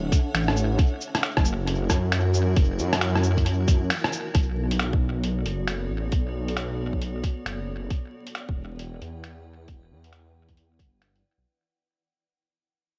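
This short cut from a longer future garage track opens on a blurred, cloudy granular pad and a menacing, saturated detuned saw bass, both pumping against the sidechain at 135 BPM in a swung 4/4 in B minor. A tight, layered electronic kick sits up front alongside a muffled, pitched-down sampler-style kit of cabasa, finger snaps, hi-hat and rim click, its compressed hits trailed by analog delay. The chords move from Dmaj9 to F#7, and at 3.9 seconds the band hits an accent that opens a brief break. From 4.3 seconds the harmony settles onto Bm9 and later Em9 as the piece fades out, the slow-blooming pad and filter-swelled bass carrying a wistful, melancholic air. Vinyl crackle and a light, echo-heavy reverb give the mix a hazy, lo-fi sheen.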